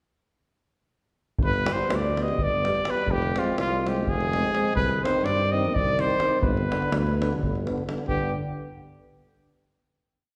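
Bittersweet and fiery, this short, complete Balkan brass band piece drives along in 7/8 at 252 eighths per minute in G phrygian dominant, with the trumpet carrying a motif-based, jazz-styled melody up front in period phrases, its light vibrato and soft attack giving a smooth top. A mellow tuba plays root and fifth on the main beats and a deep davul beats out a two-stick pattern, all entering at 1.4 s, while a vintage-toned trombone and a warm euphonium join at 1.7 s in the background with offbeat chord lines over G, Fm and Cm. A wet recital-hall reverb surrounds the band before the piece closes on a final chord at 8.1 s.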